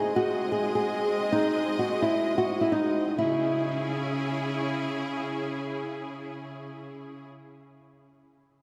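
A half-time hip hop pulse in 4/4 gives this brooding, hard-hitting fragment of a longer piece its weight, while a dreamy, cathedral-like reverb soaks the whole mix. Up front, a small, fingerpicked nylon-string guitar with fresh strings and audible finger squeak carries the melody through a tape echo until 4.5 seconds. A rich, biting symphonic string section, bowed with light vibrato and close and intense in tone, holds sustained chords throughout, shifting from G# to C# minor at 3.2 seconds.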